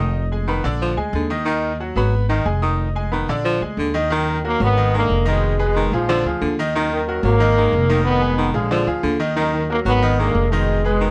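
Latin piece, cut from a longer work, with a driving, danceable straight 4/4 feel over a minor-key cycle of chords. A bright, brilliant grand piano with audible action noise and long sustain accompanies throughout, while a woody pizzicato upright bass sits up front and a punchy baritone saxophone with vibrato and a smooth top carries a second line. At 4.1 seconds a clear trombone section enters with the melody, playing with light vibrato in a present, pop-styled ensemble sound, all captured by close, detailed microphones with light reverb.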